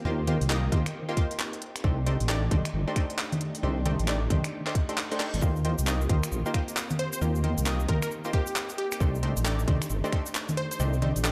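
Soulful and skippy, this swung two-step UK garage excerpt sets punchy, bright chord stabs with chorus and tape echo over a very quiet, silky string machine, a deep wobbling bass, a tight electronic kick and a tape-warm garage kit of crisp hats, congas, snaps and claps, with a reverse cymbal and drum fill near 5.2 seconds, a grainy cabasa from 5.4 seconds and a catchy detuned unison lead with vibrato arriving at 7.0 seconds in an echo-heavy mix.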